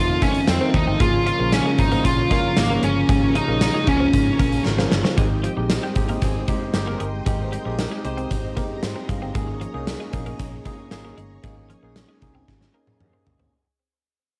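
A high-gain lead guitar carries the melody up front from the start, drenched in distortion, tape grit and analog delay, over a very quiet, tight distorted guitar, a worn, slightly out-of-tune tine electric piano with phaser, a shimmering string machine pad and a round, foam-muted fingered bass in this uplifting, romantic 1980s-style pop excerpt. A twangy, chorused twelve-string electric guitar riff and a punchy gated drum kit with tambourine and toms join almost at once, while a horn section with light vibrato adds stabs from 1.0 s. The electric piano adds a fill at 4.4 s, and the lead guitar stops at 4.6 s. From 5.2 s the piece fades out, with another electric piano fill at 8.6 s, all within a moderate booth ambience and a home-recorded cassette sound.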